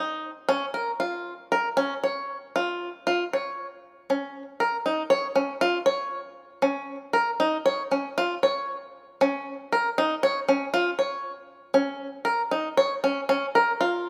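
Closely miked with a touch of light reverb, this pensive yet urgent contemporary instrumental piece, cut from a longer work, features a lone bluegrass banjo played with fingerpicks, twangy, percussive and up front, running in 5/8 at 234 BPM in eighths from Db4 to Db5, tuned to A4 = 441 Hz, as a brief opening gives way at 3.1 seconds to a new section lasting until 13.3 seconds.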